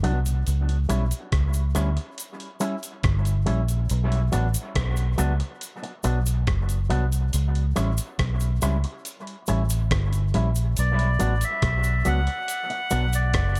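A foam-muted, round vintage bass sits up front in this hypnotic, deep dub reggae cut at 70 BPM in B minor, anchoring a twangy envelope-filtered guitar with dub echo, a gritty sampler-style drum kit with a thumpy kick, and a saturated cabasa through a break over C#dim and Bm chords until a reedy, breathy melodica enters at 10.8 seconds with its own dub echo in a dry, echo-heavy mix.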